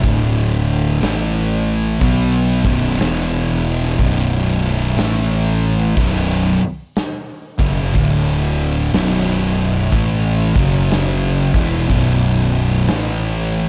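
This stoner and doom metal passage is brooding and hypnotic, cut from a longer piece and set at a slow, heavy crawl with a swung eighth-note feel in 4/4. Two thick fuzz guitars play the riff throughout: one sits up front with a warm, distorted, picked tone, while the other stays in the background with a darker shade. Beneath them, a fingered electric bass adds a growly, overdriven fuzz of its own. A big rock drum kit, up front in a roomy acoustic space, drives things with a punchy kick, a medium-tuned snare and hi-hat, and it drops out at 13.2 s while the strings ring on to 13.7 s. The riff moves through power chords centred on B5, touching D5, A5, E5 and F#5, all in a dark production with light reverb.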